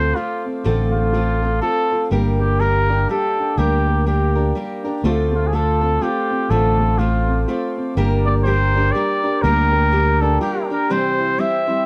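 A swung waltz at 123 BPM in D minor gives this melancholic, haunting folk excerpt its lilt, as a mellow, punchy trumpet carries a classical-style solo up front over picked steel-string acoustic guitar with audible finger squeak, reedy accordion chords and a woody upright piano's arpeggios in the background, and a round, amped fingered electric bass that stops at 10.4 s, all moving through Dm7 and Gm before landing on C at 10.9 s in light reverb.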